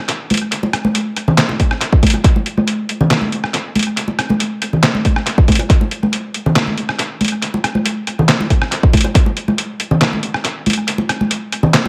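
A gritty, pitched-down sampler-style drum kit opens the excerpt at 0.1 s, its handclaps, hi-hat, rim click and medium-tuned snare compressed and tape-warm, with tape echo trailing behind, while bright acoustic congas played with soft hands arrive at 0.3 s under a dub echo. This cavernous, brooding half-time dubstep fragment moves at 139 BPM in 4/4, and a deep, layered electronic kick drum lands in short overdriven bursts, first at 1.6 s, sounding as if re-recorded in a large room and sitting louder than the other parts. The mix is echo-heavy with light reverb, and every part sits up front.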